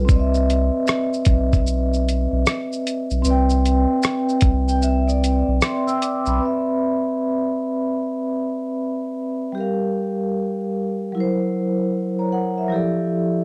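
A swung, laid-back 4/4 groove of a dusty, sampler-style drum kit drives this mellow, cosy lo-fi hip hop excerpt, its hi-hat, rim click and shaker riding over a thumpy kick, with very quiet, close and dry finger snaps sitting beneath from 0.9 to 5.9 seconds. A deep, thick saturated sub bass sits up front alongside the compressed, gritty drums, and the kick drops out at 4.8 seconds before bass and drums both stop at 6.4 seconds. Throughout, a soft-mallet vibraphone carries the accompaniment with a ringing, metallic tone and slow motor vibrato, bathed in plate reverb and continuing alone into the second half. Briefly, a darker, smoother vibraphone struck with medium hard mallets slips in behind as a second line, its tape echo adding a faint trail. The harmony moves from a Cmaj9 through Gm7 and F#7#11 to a closing Fmaj13, all colored by cassette tape and a moderate studio room.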